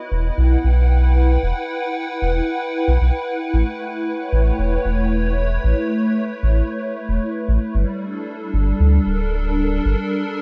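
A hollow, flute-like pad opens the excerpt with sustained, warbling chords softened by an ensemble chorus, and a round, deep analog bass joins almost immediately, sitting up front beneath it. This melancholic, eerie IDM fragment moves at 114 BPM in a straight 4/4, drifting from Emadd9 to A7 and then to Gm. Light reverb and digital ambience frame a dark production, and the cut runs about 10.4 seconds.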